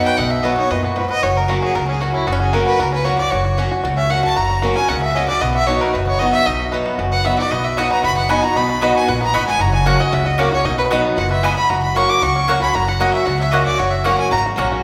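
Bluegrass with a rustic, joyful spirit, this fragment puts a clear, airy-bowed fiddle up front for a solo with light vibrato, set over a twangy, fingerpicked banjo melody, a boxy picked archtop guitar and a thumpy, gut-strung upright bass, while a woody mandolin adds background stabs from 7.8 seconds, the band ringing in the wet reverb of a recital hall.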